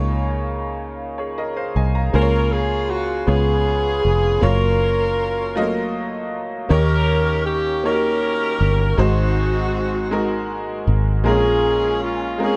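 This slow gospel excerpt in 6/8 moves at 53 BPM, counted in dotted quarters, with a straight, unhurried feel in Db major and a jubilant, soulful mood. A bright upright piano with a worn, woody, slightly detuned character and long sustain carries the accompaniment from the start, bathed in plate reverb and sitting up front. Beneath it, a fingered electric bass gives a round, foam-muted, direct amped tone, anchoring the low end throughout. At 2.1 seconds a tight saxophone section enters with the melody, its clear, present jazz-style sound shaded by vibrato, a slapback echo and plate reverb. The harmony opens on Db69 and passes through Db6, Db7, Gbmaj7, Eb7 and Ab7 before reaching Bbm7 near 11.3 seconds. The overall production is dark and lightly reverberant, keeping every part close to the listener.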